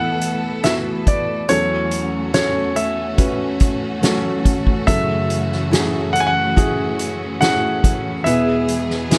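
A clear, up-front grand piano carries the melody in this short, hopeful and tender pop ballad fragment, its intimate tone close enough to reveal the soft clatter of its action. Beneath it, a felt-muted upright piano supplies mellow, hushed accompaniment, while a fingerpicked steel-string acoustic guitar, bright with fresh strings and full-bodied, traces arpeggios from the background. A clear symphonic string section holds lush, bowed chords with vibrato and a smooth top. A soft-mallet drum kit enters at 0.2 seconds with hi-hat, a punchy kick and a fat snare, sounding roomy and warm with a rolled-off top despite sitting up front. The harmony moves from Esus4 through A6/E and F#m7 before settling on E, all in a steady, straight slow pulse, bathed in studio reverb.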